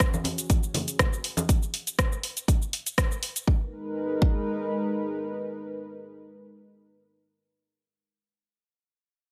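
A punchy, tape-warm electronic kick leads this hypnotic, spiritual afro house excerpt at 121 BPM in G# minor with swung 16ths, joined up front by a layered house kit of hi-hat, rim click and shaker that stops at 3.5 seconds while the kick carries on to 4.4 seconds. Close, dry, ringing congas played with soft hands appear briefly near the start, over a smooth, mellow pad of detuned sawtooth and triangle with a sub octave, slow attack, chorus and sidechain pumping, moving from F#5 to G#m. The piece opens on a drop, and the mix stays dry with little reverb.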